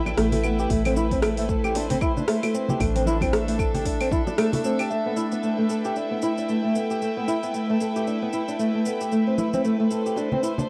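Mystical and earthy, this organic downtempo fragment swings gently in 4/4 around dark, up-front, fingerpicked nylon-string guitar arpeggios with audible finger squeak, softened by a low-pass filter, analog delay and cassette tape. A bright chamber string section holds bowed chords with sidechain pumping, while a woody, round FM bass and a deep, overdriven electronic kick fall away at 4.2 seconds; an overdriven deep house kit of claves, metallic hi-hat, rim click and shaker runs throughout, and close acoustic bongos and congas sit out the middle stretch before returning at 9.4 seconds. From 4.9 seconds a very quiet, pure quartz singing bowl rings on a meditative E5, and the piece carries the feel of a home cassette recording lifted by a wet studio reverb.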